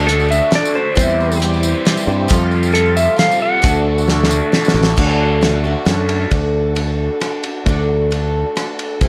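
Folk rock with a heartland rock drive, this short, hopeful excerpt moves at 135 BPM in 3/4 with a straight feel, centred in D mixolydian and cycling through D, C/E, Fadd9 and back to D. A picked twelve-string acoustic guitar carries the accompaniment with a woody, boxy, octave-doubled shimmer and subtle chorus, while a very quiet tonewheel organ holds sustained chords with key click and slow rotary speaker. A clean, compressed lap steel guitar sings the melody with slide and volume swells until 4.5 seconds, and a double-tracked overdriven electric guitar plays a riff through a phaser, stopping at 6.3 seconds. Underneath, a growly fingered electric bass sits up front beside a cloth-damped, thuddy drum kit with a fat snare, tight kick and dark cymbals, plus a jingly tambourine that drops out at 4.8 seconds. A drum fill from 4.1 to 5.0 seconds leads into a brief new passage, and light reverb wraps the whole.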